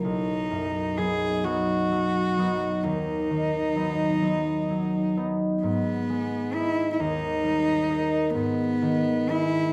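A single cello carries the melody in this tender, serene romantic duo, its airy, sul tasto bowing, soft attack and light vibrato giving the line an intimate, close presence between B3 and G#4. Beneath it, a concert harp supplies fingerpicked accompaniment, mellow and ringing across a span from B1 to F#4, sitting just as far forward as the cello. The music moves slowly at 43 BPM in dotted quarters, a 6/8 pulse shaped with flexible rubato. It opens in B major and turns toward G# minor at 5.6 s, with the harmony passing from B and B/D# to G#m, then D# and back to G#m. A moderate recital-hall reverb of about 1.4 s surrounds the detailed, closely captured playing in this short passage taken from a longer piece.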